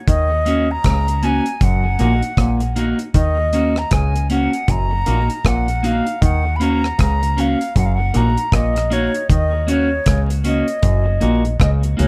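Swung 16ths at a laid-back 78 BPM in 4/4 anchor this meditative roots reggae excerpt in Eb minor, where a dry drum kit with a tight kick, hi-hat and rim click sits up front beside a dark, round, foam-muted fingered bass, a stringy overdriven clav plays its riff through a combo amp, a picked clean electric guitar with dub echo joins at 0.5 s, and a pure, straight-toned concert flute with a crisp attack and dub echo carries the melody over alternating Ebm7 and Gb6 chords, all set in light reverb with vinyl crackle.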